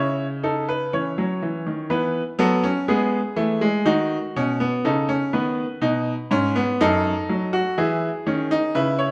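A classical, baroque-style three-part fugue for solo grand piano, this brief passage cut from a longer piece carries a stately, joyful mood over a steady, straight four-beat pulse. A bright baby grand plays alone from 0.0 to 9.1 seconds, its brilliant, open tone sitting up front, with close, detailed microphones. The harmony opens on C sharp minor before turning to E major at 1.9 seconds, then moves through B and B7 and settles back on E major at 7.8 seconds. The writing spans a range from F#2 up to C#5, giving the interwoven voices a full, grounded footing. A moderate recital hall reverb, lasting about 1.8 seconds, lends the close sound a natural sense of space.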